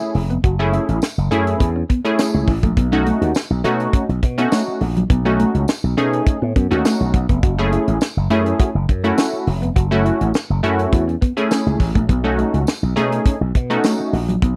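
A punchy, detuned sawtooth polysynth comp with chorus, a dark, clean fingered electric guitar riff with lush chorus, and a tight funk kit with a high-tuned snare and up-front kick open this danceable early-eighties boogie funk groove at 103 BPM in F# dorian, vamping between F#m7 and B7. A growly slap bass through an envelope filter joins at 0.1 s, and a jingly, distant tambourine enters at 1.0 s. The dry, close 1970s-style studio sound keeps the drums, bass and synth up front in this brief cut from a longer piece.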